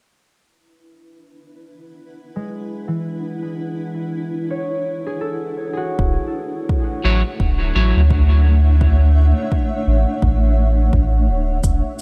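A hazy, spacious wash of digital ambience opens this ambient dub excerpt, set at 85 BPM in 4/4 with a 60% swing on the sixteenths, resting in E mixolydian on an E9sus4 chord. A cloudy, blurred granular pad with a slow attack enters at 1.6 seconds, holding sustained chords steeped in its own built-in reverb, while a ringing, thumb-plucked concert harp joins at 2.4 seconds with arpeggios passed through a low-pass filter and dub echo as a filter sweep moves across it. At 6.0 seconds a deep, round sub bass arrives up front, its soft triangle and square tones given a tube-saturated edge, alongside a tape-warm electronic kick that sounds re-recorded in a large room. Briefly, from 7.0 to 8.0 seconds, a twangy, slightly broken-up electric guitar adds fingered stabs trailed by dub echo. A faint cabasa slips in at the very end, carrying the same produced, roomy character as the kick.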